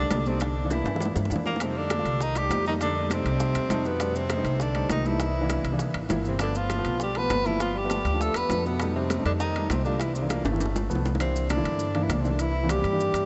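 A dreamy, reverb-soaked mix with a softened top end frames this sunny, danceable Afro-Cuban jazz excerpt, where a warm, up-front tenor saxophone carries the melody with light vibrato while a second, breathy tenor with raspy, growling subtone and scooped notes sits in the background, both touched by analog delay. A natural-sounding baby grand piano comps through C9, F9 and G9 chords over a woody, thumpy pizzicato upright bass on gut strings. Ringing, distant congas, ringing metal-shell timbales and grainy maracas keep the percussion bed going, and tight, hard-handed bongos drop out at 11.2 seconds after drum fills near 0.7 and 10.5 seconds.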